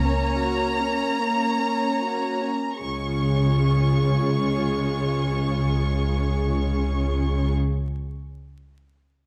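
Serene and tender, this slow, rubato classical passage in Db major, cut from a longer piece, sets a clear, focused violin section singing a high melody over a second violin line played sul tasto with a soft attack, a rich, smooth viola section, an expressive cello section and a double bass section sitting up front, all bowed with vibrato, as the music slows over a Gb/Db chord before settling on Db at 2.8 seconds, heard in a moderate recital hall reverb with close, detailed miking and vinyl crackle.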